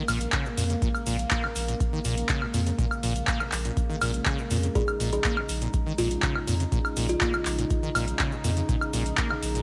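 Acid house with a hypnotic, gritty feel, this short fragment of a longer piece rides a single Bbm7 chord, built on a squelchy, resonant sawtooth acid bass riff with a filter sweep, lush chorus and analog delay, over a round sine sub bass and a deep, tape-softened electronic kick. A booming analog drum machine sits up front with handclaps, metallic hats and woodblock, while a grainy cabasa sits in the background and a smooth, warbling vintage pad holds sustained chords with sidechain pumping. From 4.8 to 7.3 seconds a woody, hollow kalimba adds a brief plucked melody with tape echo, all in a lightly reverberant home recording on cassette.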